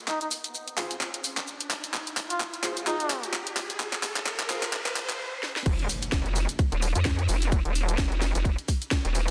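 Bass house with a swaggering, bouncy swing, where a build-up of punchy orchestra-hit-like synth stabs under a filter sweep, a background riser and a veiled cup-muted trumpet melody, driven by an overdriven garage drum kit with cracking snare and handclaps, gives way at 5.7 seconds to a drop led by a nasal, resonant vowel-sweep wobble bass and a tight electronic kick, with the garage kit carrying on and a gritty, very quiet breakbeat sampler-style kit and an impact beneath, all in a lush hall and a dense, heavily limited master.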